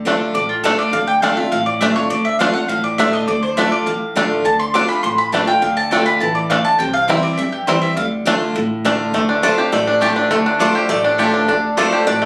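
The mandolin leads this haunting, rustic bluegrass excerpt, with its double strings and woody tone stabbing up front through a solo that runs to 9.1 seconds. The twangy banjo, played with fingerpicks, carries a percussive melody alongside it. A bright, full-bodied dreadnought guitar picks the accompaniment, and a thumpy upright bass with gut strings sits in the background. At 9.4 seconds a second picked acoustic guitar comes up front with a short high melody for the closing stretch. The tune moves at 205 BPM in straight 4/4 in D minor, shifting from Dm to C and back, and it sounds like a phone recording in a room with moderate ambience and club reverb.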